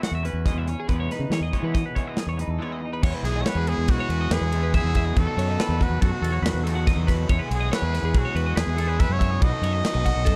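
Math rock with a midwest emo tint, this wistful, intricate excerpt moves at 141 BPM in an odd 5/4 metre, centred on E major with chords drifting between E69, Emaj7 and B7. A clean, twangy electric guitar with lush chorus plays accompaniment until 5.2 seconds, while a compressed twelve-string electric guitar spins chiming arpeggios through a phaser and a double-tracked, overdriven garage guitar carries a raw riff beneath. An acoustic drum kit in a small room sits up front with a tight kick, medium-tuned snare, hi-hat, ride and crash, joined by a growling fingered bass with overdrive that is also forward in the mix. After a brief break from 2.6 to 3.0 seconds, a bright, present trumpet enters at 3.2 seconds with a pop-style solo melody. The production is dark with little reverb, giving the guitars a close, dry feel.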